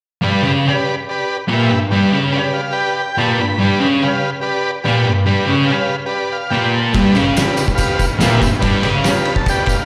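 A straight 4/4 pulse drives this rowdy, swaggering garage rock fragment, where a thick, double-tracked fuzz guitar riff sits up front beside a buzzy vintage combo organ holding sustained chords with light vibrato and breaking into short fills. At 6.9 s an oversized, low-tuned acoustic drum kit crashes in with a punchy kick, fat snare and dark ride cymbal, saturated and gritty with a rolled-off top, while a jingly tambourine rattles in the background. It sounds like a live gig heard through the venue's PA, with a recital-hall reverb around the band.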